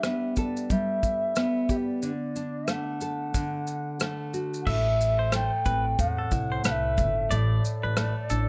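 Dry and close, with little reverb, this short fragment of sunny, easy-going acoustic pop moves at 91 BPM with a light sixteenth-note swing. A mellow, distant bass bansuri carries an expressive melody with vibrato and a crisp attack over up-front fingerpicked nylon-string guitar and a small-room unplugged kit of punchy kick, dark crash, rim click and shaker, played with bundle sticks. At 4.7 seconds a woody pizzicato upright bass and a bright, twangy electric guitar, recorded direct and compressed, join in, the guitar picking arpeggios as the chords move from Gadd9 and D to Amadd9.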